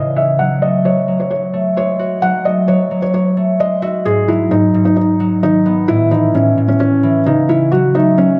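Melancholic yet hard-hitting, this half-time hip hop excerpt at 131 BPM sets an intimate, felt-muted upright piano melody up front over ringing, fingerpicked concert harp accompaniment, both darkened by a low-pass filter and trailed by analog delay in an echo-heavy mix with moderate spring reverb, moving from F#madd9 to G#m7 at 4.1 seconds, then through A and F#m.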